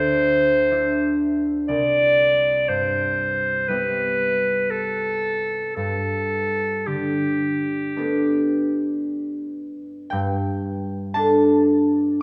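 A bright, soft-attacked clarinet carries the vintage-toned melody up front in this luminous, dreamy impressionist classical duo in G major, drifting in rubato at 54-62 BPM over a ringing, thumb-plucked concert harp that continues alone after the clarinet stops at 9.1 seconds until the fragment ends at 12.2 seconds, all bathed in the lush reverb of a concert hall.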